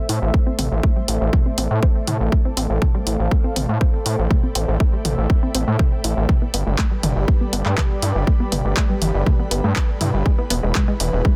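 Melodic techno at 121 BPM in a dark, cinematic mood, cut from a longer piece, where a gritty, nasal driven synth bass and a punchy, layered electronic kick sit up front beneath a tape-warm analog drum machine of handclaps, hi-hat and toms, a lush detuned unison pluck arpeggiating through digital delay, a deep, moody analog pad holding chorused chords over Am, F/A, G and E, and a very quiet, ethereal airy pad hovering high above, with sidechain pumping on the dark pad, pluck, bass and the hats and toms, all in a dense, heavily limited master with little reverb.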